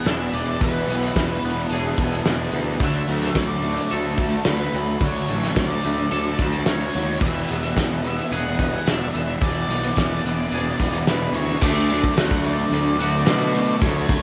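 Shoegaze and dream pop rock at 109 BPM in D lydian, dreamy and blissful, this short cut from a longer piece layers a dark octave-fuzz lead melody over twangy clean arpeggios washed in chorus, tape and delay, a thick fuzz riff in the background, and two very quiet riffing guitars, one crunchy and one bright and double-tracked. A punchy, overdriven fuzz bass and a loose acoustic drum kit with a fat snare, dark cymbals and a pumping room sit up front, while a jingly, vintage tambourine joins at 3.4 seconds. Chords move between E7 and Dmaj7 before settling on D at 11.6 seconds, all captured as a home cassette recording with moderate studio reverb.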